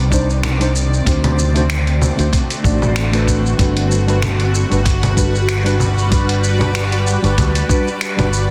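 A dense, heavily limited modern master sits in a lush hall reverb, giving this short cut from a longer sunset chillout piece a smooth, blissful glow. At 95 BPM in 4/4 with a light 16th-note swing in G major, a shimmering ambient pad holds sustained chords from the first second, its ethereal, detuned unison tone treated with chorus, phaser, built-in reverb and an octave-up shimmer. Up front, a fretless electric bass plays low and round, with a dark, amped character. A mellow tine electric piano enters at 0.1 seconds with warm, clean comping colored by tape echo. A gritty, dusty soul sampler-style kit of congas, finger snaps, hi-hat and shaker, with soft clipping on the snare, plays alongside a thumpy electronic kick, both re-recorded in a large room. The kick drops out at 7.8 seconds. The harmony moves from Cmadd9 to D7 and settles on Gmaj7 at 3.6 seconds.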